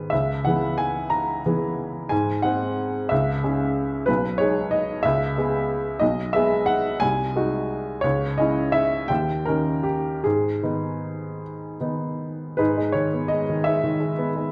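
A clear, woody upright piano carries this brief romantic character piece alone, its intimate, up-front tone laced with audible action noise. Set in G# minor and 6/8, the music moves at 50 to 63 BPM counted in dotted quarters, with a rubato feel that lets the pulse stretch and give. The mood is brooding and stormy, with harmony that leans on C#m7 and G#7 before passing through D#7 and settling on G# minor around 10.2 seconds. The playing ranges from B1 to A#5, and the opening section returns at 12.6 seconds just before the fragment, cut from a longer piece, breaks off at 14.5 seconds. A wet recital hall reverb surrounds the instrument, and the dark production keeps the top end subdued and mellow.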